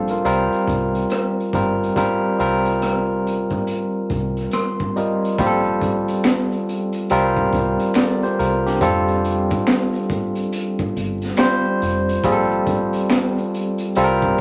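A barky, bright tine electric piano opens this soulful neo-soul and R&B excerpt, sitting up front over a deep, round, foam-muted fingered electric bass that starts with it. At a relaxed 70 BPM in 4/4 with a swung sixteenth-note feel, a crunchy breakbeat kit enters at 0.1 seconds, its high-tuned snare, tight kick, hi-hat, rim click and finger snaps sounding gritty, saturated and dark with a rolled-off top. The electric piano plays a fill from 4.1 seconds, leading into a new section at 5.4 seconds where the harmony moves through Bbsus2, C5 and F. Maracas and a group handclap join in the background at that point, adding a close, acoustic texture. A moderate studio reverb and a layer of vinyl crackle lend the whole excerpt a dusty, intimate atmosphere.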